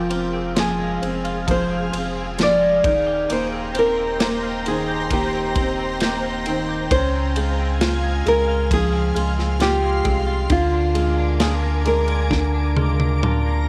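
A tender, emotional pop ballad in Eb major at 66 BPM opens with a small, fingerpicked nylon-string guitar carrying the melody over a soft, felt-muted upright piano, a deep sine-and-triangle sub bass with octave, and a shimmering, ethereal pad with detuned chorus and built-in reverb, while a clean, compressed twelve-string electric guitar plays arpeggios in the background. A modern studio drum kit with a punchy kick, medium-tuned snare, ride cymbal and toms enters at 0.1 s and plays a fill from 12.3 s, as the nylon guitar stops at 12.7 s. The chords move from Fm through Eb6 and Dbmaj7 to Bb7/D in this excerpt from a longer piece, set in studio reverb.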